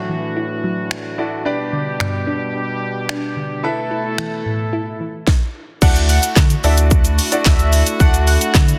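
Upbeat and carefree, this dance-pop excerpt moves at 110 BPM in D major. A bright grand piano, a clear brass ensemble holding sustained chords and a glassy wavetable pluck playing arpeggios with chorus and dub echo all share a sidechain pumping over a Dadd9, G and Asus2 progression, while a punchy, up-front house drum kit with a cracking snare and bright hats comes in at 0.9 seconds. At the drop at 5.8 seconds, a deep, round sub bass arrives with a fat, detuned analog lead carrying the melody in the background through dub echo, all in a dense, heavily limited mix with light digital reverb.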